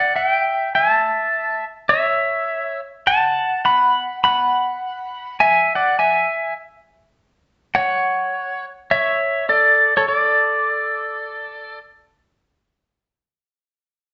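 Swinging eighths at 103 BPM in 4/4 carry this sunny, dreamy Hawaiian fragment, where a bright, clean electric pedal steel guitar sits up front as the solo voice, picked with fingerpicks and compressed, gliding on slide and volume swells between A4 and B5 over Em7, A and E chords before falling silent at 11.8 s, set in a wet large-studio reverb with a live-room feel and softened highs.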